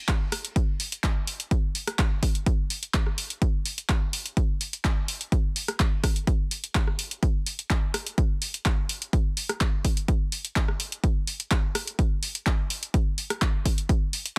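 An overdriven electronic kick drum and a punchy analog drum machine, with handclaps, hi-hat and rim click, both start at 0.1 s and sit up front in this joyful, feel-good house cut, moving at 126 BPM in a straight 4/4. The kick thumps with a gritty analog edge until 14.0 s, while the drum machine's crunchy percussion carries on to 14.3 s. The dry sound and dense, heavily limited modern master keep the short groove tight and close.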